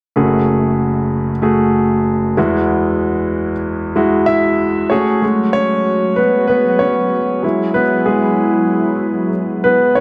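Driving yet dramatic, this pop passage is cut from a longer piece and moves at 95 BPM in a straight 4/4. A clear concert grand piano opens at 0.2 s as the accompaniment, sitting up front with an intimate, present tone, audible action noise, deep bass and long sustain. From 5.2 s the piano takes a solo while a lush unison pad enters beneath it, holding sustained chords with a thick, airy sawtooth character, detuned layers, a noise layer and a slow attack, coloured by chorus and phaser. The harmony alternates between F#madd9 and Eadd9. The production is dark and warm overall, with the instruments set in a recital hall reverb and a touch of small room ambience.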